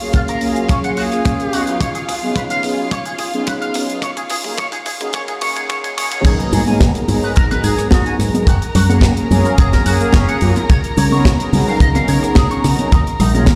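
An up-front, tight acoustic kick drives this sleek, groovy nu-disco excerpt at 108 BPM in G# dorian, alongside a dry, polished funk kit with bright cymbals, a twangy envelope-filtered clean guitar riff, round, dark chorused synth brass and lush, woody strings, with a filter-swept build-up and drum fill giving way at 6.2 seconds to a drop where a punchy envelope-filtered fingered bass and a background shaker and congas enter, while a breathy, unsteady jazz flute with digital delay adds brief melodic phrases, most fully from 7.6 seconds, all set in large studio reverb.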